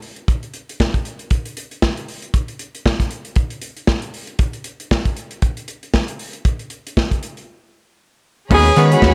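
Glamorous and driving, this disco excerpt moves at 117 BPM in 4/4 with a light swing on the sixteenths. For its first 8.5 seconds a modern studio drum kit plays alone, up front, with bright crash and hi-hat cymbals, a medium-tuned snare and a tight kick, reaching a break at 7.5 seconds. At 8.5 seconds the full band enters on a Db7sus4 chord over Eb, led by a breathy tenor saxophone that sits up front yet sounds distant and roomy, with a light jazz vibrato. A dark, round, punchy fingered electric bass anchors the low end, while a clean, picked electric guitar and a stringy, overdriven clav, both treated with phaser, sit in the background. A lush, bowed string section adds sustained chords with a clear, smooth top, all within a studio reverb.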